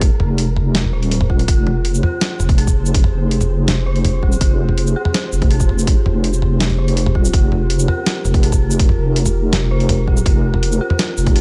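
A hard-clipped electronic kick sits up front in this tense, spacious half-time drum and bass passage at 164 BPM in F minor, cut from a longer piece and built on an Fmadd9 chord. Beside it, a gritty, pitched-down boom bap sampler-style kit supplies hi-hat, shaker, a medium-tuned snare and toms with a tape-like, compressed character and studio reverb. A deep, wobbling bass with a soft square-and-sine tone and chorus holds the low end between Eb1 and F1. Above, an eerie, inharmonic FM synth bell plays arpeggios through chorus, phaser, 12-bit sampler grit and digital delay, with a filter sweep running across its whole length, while a flickering granular texture hovers in the background. From 2.3 seconds, a moody analog pad with a sub octave and a moving notch adds slow-attack sustained chords with a sidechain pump, and the overall mix stays dry.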